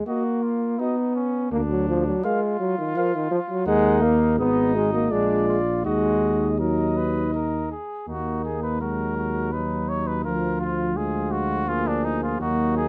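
A mellow trombone opens this noble classical brass quintet fragment in a stately triple metre, its light vibrato placed up front, as two trumpets and a shadowy French horn join almost at once. The lead trumpet carries the melody with vibrato and a soft attack, a second trumpet sings a supporting line beneath it, and a dusky tuba enters at 1.5 seconds with a smooth-topped bass that also sits up front. Light reverb frames the dark, rounded production as the minor-key harmony moves through a stately cadence and restates its opening phrase.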